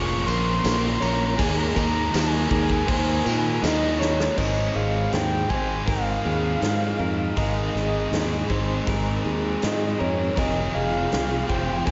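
Wistful and hazy, this short cut from a longer shoegaze and dream pop rock piece moves at 80 BPM in a straight 4/4, centered on Ab major. A breathy, flute-like synth lead carries the melody from the start, its soft, sustained tone layered with a sub octave and noise, touched by vibrato, chorus and analog delay. Beneath it, a slightly broken-up guitar through a small old amp plays compressed arpeggios in the background with subtle chorus and delay, while an up-front, dark overdriven guitar riffs through a reverse reverb and a thick fuzz guitar adds a murky distorted riff with ensemble chorus. A bright fingered electric bass holds the low end, and a big, natural-sounding rock kit with a punchy kick and bright cymbals enters at 0.3 seconds alongside a faint, jingly tambourine that drops out at 3.8 seconds. A drum fill at 4.0 seconds leads into a new section at 4.4 seconds, where the harmony shifts from Bbm7 and Ebsus4 to a long Ab6 before settling on Fm7, all soaked in a lush plate reverb with the top end rolled off for a dreamy, veiled sound.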